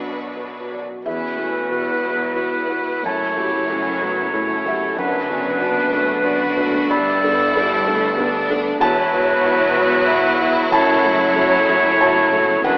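A soft, intimate felt-muted upright piano with audible action noise begins this sorrowful, longing film-score excerpt in a rubato 3/4 at 94 BPM, tuned to A4 = 437 Hz. Alongside it from the start, a smooth violin section carries the melody over a very quiet second violin line, with distant violas and a bright, intense cello section on the bass. A hollow, mellow flute enters at 0.7 s, and at 1.1 s an up-front vintage oboe, a very quiet clarinet, a dark, tight French horn section holding sustained chords and a lush double bass section come in as the harmony moves through Bm, Esus2, F#m7 and Gadd9, all set in moderate scoring-stage reverb with an AM radio sound.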